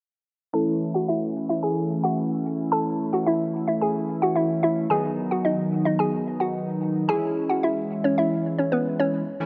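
A straight 4/4 pulse at 110 BPM drives this energetic, confident pop passage, cut from a longer piece and moving through A, B and C#m over a light reverb. A hollow, bouncy square-wave pluck carries the melody from B3 to A5, its detuned, chorused tone plucked and decaying with a mellow edge and a touch of noise. Beneath it a glossy, retro polysynth built from pulse and sawtooth waves holds sustained, dark chords up front, its pulse-width modulation and filter sweep giving it a shifting sheen.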